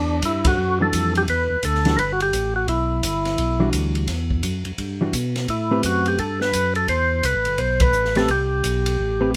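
A clean, percussive tonewheel organ carries the melody up front through a slow rotary speaker, its key click and second-harmonic percussion giving this late-night, bluesy soul jazz organ trio its bite as it swings at 171 BPM in E minor over Em9 and Am9 chords, cut from a longer piece. A second tonewheel organ plays the bass, full and lightly overdriven with vibrato through a stationary speaker, beside an acoustic small-room drum kit with dark cymbals, a high-tuned snare and a boomy kick. A compressed, fingered hollow-body electric guitar adds accompaniment from 0.8 seconds, the band hits accents at 0.4 and 7.8 seconds, and light reverb rounds out the sound.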